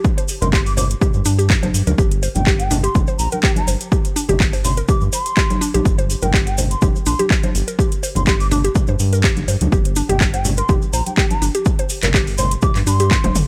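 A driving afro house groove at 124 BPM in G minor opens with a punchy, overdriven electronic kick up front, a grainy cabasa in the background and a woody, nasal mallet-like synth pluck playing arpeggios through chorus, cassette tape, sidechain pumping and dub echo. Just after, a house kit with metallic hats, handclaps and toms joins, along with bright, soft-handed congas, a deep, round analog bass pumping against the kick, and an airy bamboo bansuri singing a mellow, expressive melody with vibrato and dub echo. The dry sound keeps the swung sixteenths crisp, and this excerpt from a longer piece ends on a drum fill at 13.2 seconds.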